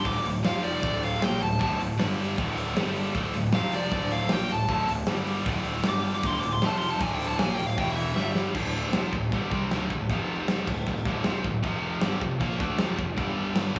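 A dark, smooth lead guitar leads this aggressive, menacing hard rock excerpt, its overdriven, picked solo ranging from D5 to D6 and carrying a slapback echo until 8.3 seconds. Beneath it, a double-tracked, scooped high-gain guitar drives the riff in D minor at 156 BPM in a straight 4/4, its bright, distorted tone sitting up front. A growly fuzz bass, fingered and overdriven, anchors the low end from D1 to D2. The big acoustic drum kit brings a punchy kick, a medium-tuned snare, hi-hat and crash, with a fill from 8.2 to 8.6 seconds leading into the second section. The chords move among D5, E5, F5 and G5 power shapes and D minor, and the parts share a moderate large studio reverb blended with a small room sound.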